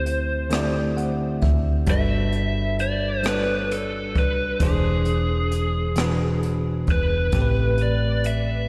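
A dark, overdriven lead guitar, picked through a small cranked amp with delay, sings a tender melody over a bright, bell-like electric piano and a round, woody fretless bass in this slow six-eight R&B passage cut from a longer piece. A jazz kit played with brushes enters at 0.1 seconds with hi-hat, rim click and a boomy kick, while the electric piano slips in a fill between 0.5 and 1.9 seconds. Chords such as Gmaj9 and E7b13 drift through a dreamy mix soaked in lush hall reverb.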